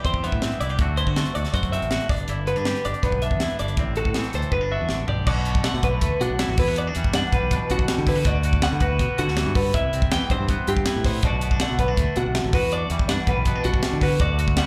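A crisp, airy fusion drum kit with a high-tuned snare and punchy kick sits up front in this bright, wistful math rock and midwest emo excerpt at 161 BPM, where a bright twelve-string electric guitar picks arpeggios, a warm, twangy electric guitar comps, both carrying slapback echo, and a fingered electric bass holds the low end through a drum fill from 4.5 to 5.3 seconds into a Bm7 to Em9 passage, all heard through a club PA with small-room ambience.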